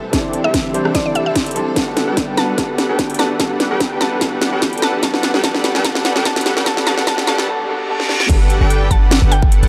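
Future bass at 147 BPM in G major with a half-time, lightly swung feel, this lush, playful excerpt rides a build-up over chords moving from C69 through Gmaj9, Em7 and Em11, as a fat, detuned sawtooth polysynth riff with lush chorus and sidechain pumping plays alongside a mallet-like FM pluck melody, an intimate concert grand piano with audible action noise and dub echo, and very quiet bowed symphonic strings. A punchy layered electronic kick and an overdriven trap kit with sharp snare, metallic hats, rim clicks and crashes drive the fills, while a riser and reverse cymbal and filter sweeps push toward the drop at 8.3 s, where a deep, boomy 808-style bass on G1 arrives up front. The dark production sits in a huge ambient reverb, with the strings dropping out at 7.5 s and the piano and effects ending as the drop lands.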